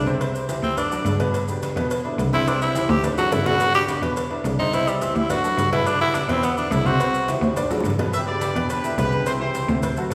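A raspy, gritty tenor saxophone leads this joyful, sunny salsa excerpt at 212 BPM in G major, soloing up front with scooped notes until 7.3 seconds over clear piano, a bowed cello bass with light vibrato, background congas, timbales, agogo bells, cowbell, bongos and close, grainy maracas, before a brilliant, punchy horn section takes the melody at 8.1 seconds, all in a wet recital-hall reverb.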